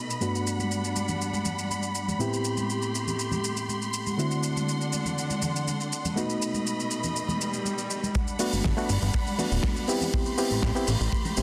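A dense, heavily limited modern master with a moderate echo-chamber reverb frames this sunny, groovy nu-disco fragment at 121 BPM in G major, cut from a longer piece. A reedy, worn electric piano, slightly out of tune and roughened by vintage 12-bit sampler grit, a low-pass filter and analog delay, carries the accompaniment from the start, while a lush, distant string section with vibrato and portamento holds sustained chords that pump under sidechain. A damped 70s kit with a fat snare, hi-hat and shaker keeps a straight 4/4 pulse, and bright, thin-skinned congas sit in the background, played with soft hands in a live room. The harmony moves through Gmaj7, Am9, D7 and B7 before an electronic swell at 7.4 seconds leads into the drop at 8.2 seconds. There a dry, tight kick arrives up front and a fat, detuned analog bass with a fast attack joins at 8.5 seconds, thickening the low end as the chords return to Gmaj7 and Am9.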